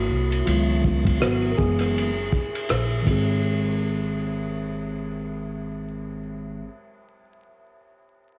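Jazz-hop in a relaxed, cool mood, moving at 81 BPM in 4/4 with a swung sixteenth-note feel, this short excerpt cut from a longer piece sits in Ab mixolydian with tuning slightly below standard. A mellow tine electric piano carries the accompaniment throughout and takes a solo from 0.0 to 3.4 seconds, its clean, direct tone placed up front and colored by cassette tape. Underneath, a pizzicato upright bass with steel strings plays a woody low line for the full length. A cloth-damped, thuddy drum kit of hi-hat, kick drum, ride cymbal and rim click plays only from 0.3 to 3.3 seconds, sounding muffled and gritty with dark cymbals, a tight kick and a rolled-off top, also run through cassette tape. The harmony drifts through Db9sus4 and Gb9sus4 before settling on Ab, while light reverb, small room ambience and vinyl crackle give the whole a homemade lo-fi character.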